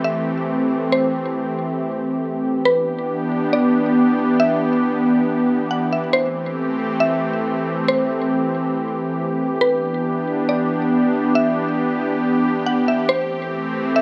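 This hazy, spacious hip hop fragment sits at 138 BPM in a half-time feel in E minor, cut from a longer piece and alternating between Am7 and Em7 chords. An up-front analog pad, detuned, sawtooth-based and warbling with chorus, holds sustained chords with a slow attack, while a woody, round FM mallet-like pluck carries the melody between B4 and F#5, its fast, decaying notes mellow and treated with chorus, plate reverb and delay. Both parts play throughout the 14 seconds inside a wet, small room.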